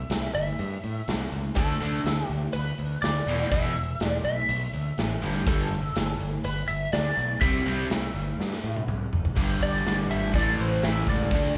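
A band playing live together in one large studio room fills this gritty, brooding classic rock excerpt, with a moderate reverb hanging around every hit at a straight 123 BPM in 4/4. From the start, a bright, twangy lead guitar with a touch of break-up and a wah effect carries the melody, while a growling fingered bass, overdriven and punchy, holds down the low end and a big acoustic drum kit sits up front with bright cymbals, a punchy kick, a medium-tuned snare and toms. At 1.6 seconds two picked rhythm guitars join on the riff, one a raw garage tone and the other an overdriven semi-hollow body with a warm, hollow-body character. The chords move from C through D5, E5 and G5 before returning to C, and a drum fill from 8.4 seconds sets up the next section. At 9.4 seconds the lead guitar steps into a solo over G5 and A5, running until the cut at 11.6 seconds.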